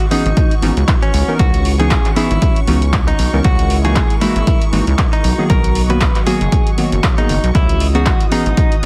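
This deep house excerpt opens with a bright, twangy clean electric guitar carrying the melody through an analog delay, while a smooth, detuned sawtooth pad sustains chords in the background and a punchy analog drum machine lays down handclaps and hi-hat. A vintage string machine adds a shimmering, slow-attack violin texture high above, and round chorused keys stabs come in almost at once with a filter sweep and decaying tail. By 0.4 seconds a rubbery, hollow square bass and an up-front electronic kick have joined, the bass thickened with tube saturation and bouncy filter plucks, and the kick sounding re-recorded in a small room. At 117 BPM in 4/4 with a light sixteenth-note swing, the groove feels warm and hypnotic, its pad, strings, keys and bass breathing with sidechain pumping. The harmony sits in C# dorian, moving from C#m9 through F#13/C# and Bmaj7 before returning to C#m9. Digital ambience, vinyl crackle and a dense, heavily limited modern master frame the sound.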